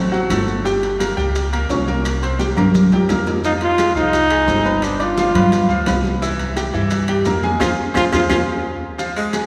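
A wet concert-hall reverb surrounds this fiery, danceable salsa excerpt, where a punchy, vibrato-laden trombone leads up front over a brilliant grand piano with audible action noise, a thumpy gut-string upright bass, thin-skinned congas, grainy maracas, round bongos, ringing metal-shell timbales and woody claves, with drum fills at 2.6 and 7.6 seconds, the latter joined by a band accent, before a close-miked saxophone section sounds briefly at 9.2 seconds.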